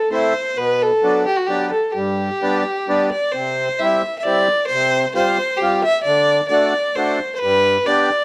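Bouncy and festive, this short cut from a longer piece is an alpine folk dance in three, played with a lilting swing on the eighth notes. A single bowed fiddle carries the melody up front from the opening moment to 8.2 seconds, its tone smooth and even with a light vibrato and a slightly boxy edge, set in a plate reverb. An accordion supplies the accompaniment, close-miked and dry, its reedy, full voice also sitting up front. The harmony opens on A minor and B minor before settling onto G, then a second section from 3.3 seconds moves through C, a suspended chord over C, and D before arriving on G. A moderate studio reverb surrounds the pair.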